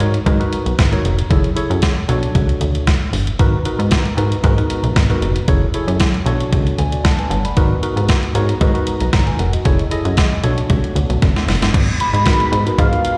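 A straight 4/4 groove from a crisp 8-bit digital drum machine, with its thumpy kick, medium-tuned snare, hi-hat and crash, drives this slick, late-night slice of early-eighties boogie funk, cut from a longer piece. Up front beside it, a plucky analog bass sounds punchy and funky, its fast attack decaying, while a worn, slightly out-of-tune tine electric piano plays minor-ninth chords through a slapback echo and adds a short fill midway. From 3.6 seconds a shimmering, retro pulse-width pad with chorus sits in the background, holding sustained chords. A drum fill leads into a new section at 11.7 seconds, and at 12.0 seconds a fat, dark analog lead enters with vibrato, chorus, slapback and tape echo to carry the melody. The whole is heard as a live gig through the venue's PA, with a light recital-hall reverb.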